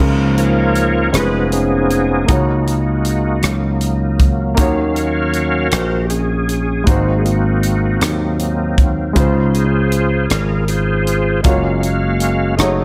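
A reedy tonewheel organ takes the solo through the whole 12.8 seconds of this slow, soulful gospel passage in a straight 6/8, sitting up front with key click, chorus vibrato and a fast rotary speaker while its sustained chords move from Db6 through Ebm7 and Ab7 to Gbmaj7. A punchy, foam-muted thumbed slap bass and a crisp, airy, polished acoustic fusion kit with a tight kick, crash, hi-hat and rim click drive the jubilant feel, while a baby grand piano with short sustain adds natural-toned accompaniment beneath. Light reverb and studio ambience surround this section cut from a longer piece.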